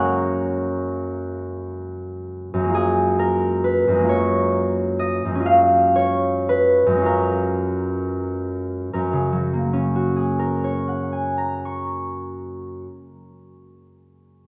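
In a rubato 6/8 at 29-45 BPM in dotted quarters, this peaceful, serene classical excerpt for solo concert harp in F# major, tuned to A4 = 438 Hz, places bright, thumb-plucked, ringing tones up front in a moderate concert hall reverb, spanning F#2 to C#6 as its F#add9 harmony turns to F#maj9 at 2.7 s and returns to F#add9 at 8.9 s, slowing from 1.3 s until that return.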